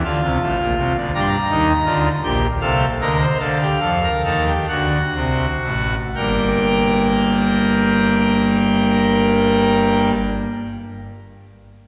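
In a straight 6/8 lilt that slows over the first 6.2 seconds, this serious, driving fragment of a baroque-style three-part fugue features a solo pipe organ on full organ, its brilliant mixtures and majestic, romantic voicing placed up front, passing through a suspended chord and a dominant seventh before settling home and sounding until 10.1 seconds inside a wet church reverb.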